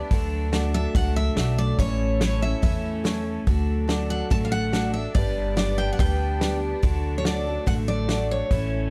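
A picked, full-bodied acoustic guitar, a clear upright piano with audible action noise sitting in the background, and a distant, floating bowed string section open this down-home, nostalgic honky-tonk country excerpt at 143 BPM in D major, joined at 0.1 s by a thumpy, woody pizzicato upright bass and a natural small-room drum kit with a punchy kick and hi-hat, and at 0.7 s by a bright, fresh-stringed lead acoustic guitar carrying the melody through plate reverb over a D, A, D, G, D progression.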